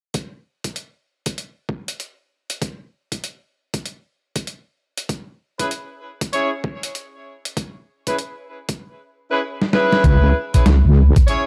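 A playful, gritty glitch hop excerpt in C# minor at 97 BPM with a swung 16th feel opens on a thumpy, pitched-down electronic kick and a tape-warm, sampler-style boom bap kit of hi-hat and medium-tuned snare over a C#m7 chord, then a bright, punchy horn section enters with tight stabs at 5.6 s, roughened by 12-bit sampler crunch, sidechain pumping and digital delay, and after a drum fill a heavy, saturated sawtooth wobble bass with chorus arrives up front on C#2 at 10.0 s, in a dry room.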